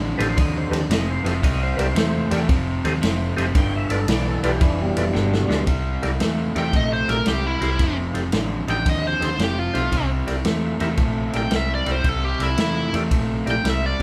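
An overdriven, compressed electric guitar riff and a dark, round hollow-body bass open this swaggering, rollicking electric blues shuffle, joined almost at once by a punchy vintage drum kit on kick, snare and ride and a percussive tonewheel organ with key click and slow rotary speaker. After a drum fill around 5.1 seconds, a bright, biting overdriven lead guitar enters at 6.6 seconds with a melody. The band sounds as if playing live together in one large studio room with moderate reverb, and the clip is cut from a longer piece.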